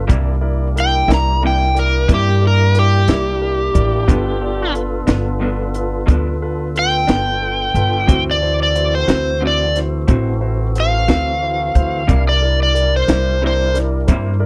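A slow blues in a straight 12/8 feel, this short cut from a longer piece sounds rollicking and soulful, moving through C7, G7 and D7 before returning to C7 at 12.1 seconds. An overdriven slide guitar carries the melody up front, entering at 0.8 seconds with a fingered, gritty voice that sits high above the band. Underneath, a woody, thumpy upright bass with gut strings and a compact cocktail drum kit with a punchy kick, a high-tuned snare and a dark, rolled-off top drive the groove. A concert grand piano with deep bass and an electric guitar through a small old amp, slightly broken-up and lo-fi with tremolo, fill out the accompaniment. A fat tonewheel organ holds sustained chords in the background, its slow rotary speaker and key click adding a gentle shimmer. The sound is dry and close, with little reverb, in the manner of a 1970s studio session.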